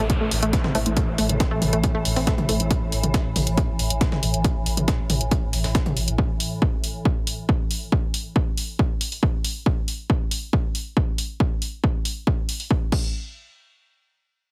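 A punchy, layered electronic kick sits up front throughout this dark, driving peak-time techno excerpt at 138 BPM in A minor. Beside it, a tape-saturated analog drum machine adds crash, hi-hats and toms that pump with the sidechain, while a gritty, pitched-up breakbeat kit of filtered hats and snare sits in the background. A round, overdriven sine sub bass and a swarming, granular drone hold the low end. A lush, detuned sawtooth unison pluck plays a riff with tape echo until 2.6 s, alongside a muted, very quiet dub chord stab with phaser and a background downlifter. The mix is dry, with a heavily compressed, radio-like sound, and the A5 harmony drops out at 12.9 s, just before the kick and drum machine stop at 13.0 s.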